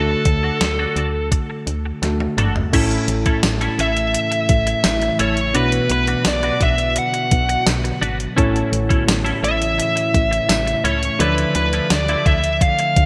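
A straight 4/4 pulse at 85 BPM drives this nostalgic, uplifting 1980s-style pop excerpt in A major, with a clean 12-bit drum machine entering at 0.3 seconds, its thumpy kick, fat snare, hi-hat, tambourine, toms and crash sitting up front in gated reverb, and a drum fill from 2.0 to 2.7 seconds leading into the second section. Underneath, a solid FM bass gives punchy, round, dark notes with a fast attack that decays, while a worn, slightly out-of-tune tine electric piano, lightly overdriven through a combo amp, supplies accompaniment. A bright, twangy twelve-string electric guitar plays a compressed, picked riff through analog chorus, stopping at 12.8 seconds. From 4.0 seconds an ethereal, airy pad of detuned sawtooth and triangle tones with a noise layer swells in the background with ensemble chorus, phaser and its own reverb, holding sustained chords. Over it all, a bluesy overdriven lead guitar carries the melody up front with distortion and digital delay, moving through chords of D, A, Bm, A and Dmadd9 in a bright digital production with moderate plate reverb.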